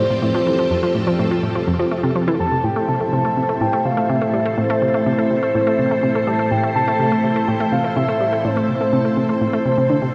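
A bright, nasal analog pluck sits up front with a riff in the low register, its sawtooth and square-wave tones snapping with a fast attack and short decay, thickened by chorus and analog delay. Alongside it, a lush string machine holds sustained chords with a slow attack and long release, its vintage ensemble chorus and moving notch giving the full ensemble a mellow shimmer. A soft, dark, octave-layered synth lead carries the melody above, round and triangle-based with a sub octave, vibrato, chorus and analog delay. This ambient, sequencer-driven space music moves at 124 BPM in a straight 4/4 in A minor, tuned to A4 = 442 Hz, shifting from Fadd9 to Am at 2.6 s. A huge, wet ambient reverb with a 7.6-second tail washes over the sound, making this cosmic, expansive passage, cut from a longer piece, feel vast as all three parts play together for its full 10.1 seconds.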